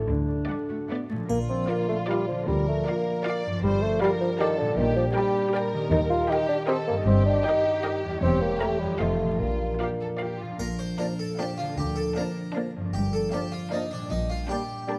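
Ringing harp arpeggios open this playful, mischievous film cue in Bb major at 155 BPM in 3/4, joined at once by a brief dark clarinet note, rich bowed double basses and a symphonic cello section beneath, while a focused studio violin section carries the vibrato melody over background chamber violins and violas. From 1.3 seconds an up-front mellow bassoon and shadowy French horn chords fill out the whimsical texture, with a soft triangle ping, as the chords move through Gm7 and Eb to an Edim7 and F7 turn. At 10.6 seconds a brilliant, dry harpsichord joins the violins on the melody with an airy silver flute behind it, all set in light reverb with close, detailed microphones and vinyl crackle in this cut from a longer piece.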